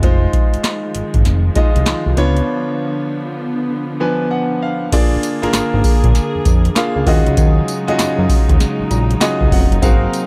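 Bouncy and punchy, this new jack swing excerpt rides a swung groove built on a booming analog drum machine with a deep kick, tonal snare, handclaps, metallic hats, tambourine and crash, sitting up front over a fat, detuned analog bass with a moving notch. A clear, smooth concert grand piano carries the accompaniment and adds fills at 3.7 and 8.6 seconds, while a dark chamber string section holds soft, sul tasto chords with light vibrato beneath. A break arrives at 2.5 seconds before a new section at 4.9 seconds, all in a dry, close sound.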